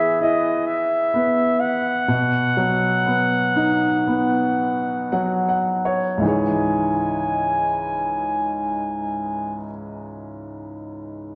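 A clear, vintage-toned flugelhorn and a bright grand piano begin together, opening this brief, heartbroken pop fragment at a slow, longing pace that gradually slows through its first section. The flugelhorn carries the solo melody up front in a jazz style with scooped notes, while the brilliant, open piano supports it with long-sustained chords moving from E to B. From 4.6 seconds the piano adds a fill that leads into a second section built on a C#madd9 chord. The flugelhorn falls silent at 9.6 seconds, leaving the piano to ring on briefly alone. A wet scoring-stage reverb and the worn, warbling pitch drift of old cassette tape give the recording a faded, nostalgic cast.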